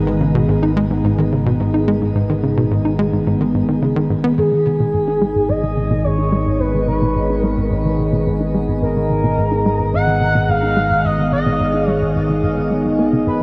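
Bathed in a huge, wet ambient reverb with a long tail, this excerpt of hypnotic, cosmic space music pulses at 108 BPM in a straight 4/4, resting on a single G# minor chord. An up-front, sweeping resonant pad holds sustained chords, its detuned, wave-folded sawtooth tone evolving through slow filter swells and colored by chorus, phaser and shimmer reverb. Beneath it, a tight, punchy sequencer bass drives a riff with a plucky, decaying edge, sent into shimmer reverb and tape echo. Lower still, a vintage analog drone sustains a low G#, its pulse-width-modulated tone warbling under chorus. At 4.4 s, an expressive portamento lead enters up front with a smooth, vibrato-laden sawtooth melody drenched in lush chorus, shimmer reverb and tape echo, while a filter sweep on the analog synth bass runs through to the close at 13.4 s.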